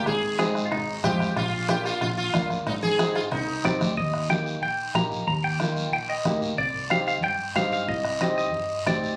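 Captured on a phone in a club-like room with compression, this brief cut from a longer cumbia piece at 184 BPM has a passionate, driving feel, with a buzzing, shimmering sitar up front carrying the melody until 3.8 seconds over a foam-muted fingered electric bass, a soft-beater bombo, ringing congas and a raspy guiro. A brilliant, woody upright piano supplies the accompaniment through chords moving from Ab and Bb to Cm. At 4.0 seconds a twangy, picked clean electric guitar takes a compressed solo over Eb and Cmadd9.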